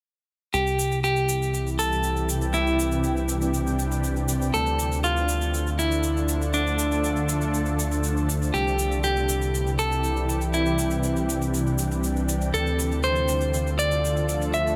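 Bittersweet yet driving, this progressive house excerpt moves at 120 BPM in a straight 4/4, cycling between C and Dm chords every few seconds. A clean electric guitar carries the melody up front from 0.5 seconds, its dark, picked tone trailed by digital delay. A fat analog bass sits beside it, thick and sawtooth-based with a detuned filter pluck and a fast attack, holding low and sustained. At 1.2 seconds a shimmering ambient pad arrives with slow-attack chords, ethereal and warbling, its vintage sine tone given an octave-up shimmer, granular texture, chorus and its own reverb. Underneath, a grainy, compressed cabasa adds bright acoustic grit, while a layered electronic hi-hat, re-recorded in a small room, plays very quietly. The whole mix sits in a light digital ambience.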